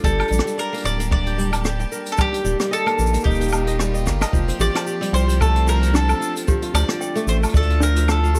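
A lightly swung 112 BPM pulse in 4/4 from a punchy kick and a jazz brush kit of hi-hat, rim click, shaker and woodblock, with a drum fill at 4.1 seconds, carries this wistful, autumnal folktronica excerpt, where an up-front picked mandolin melody and ringing, crisp kora arpeggios, both with delay, glide over a deep, round analog bass and a bright bowed string quartet holding chords in the background through Gm, Eb, Fadd9 and Dm, while a clanky, bell-like, slightly out-of-tune toy piano with delay joins at 4.6 seconds, all beneath a bed of vinyl crackle.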